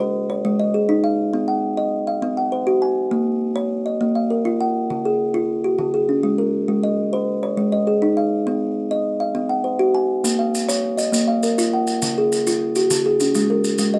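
Southern African traditional music in the mbira style, this short excerpt cut from a longer piece moves at 135 BPM in a straight 12/8, its mood warm and hypnotic. A kalimba carries the whole passage, spinning an interlocking cycle of arpeggios that spans its lower register and its high notes, tuned to an equiheptatonic scale centred on Bb with A4 set to 435 Hz. Its thumb-plucked tone is woody and ringing, with the hollow resonance of a box body, and it sits up front in the mix. The harmony circles through Ab, Cm, Bbm and Db, repeating the same cycle as the pattern returns at 10.2 seconds. At that moment maracas join at a lower level, grainy and mellow, heard at a distance as if in a large room. A light reverb gently surrounds the recording.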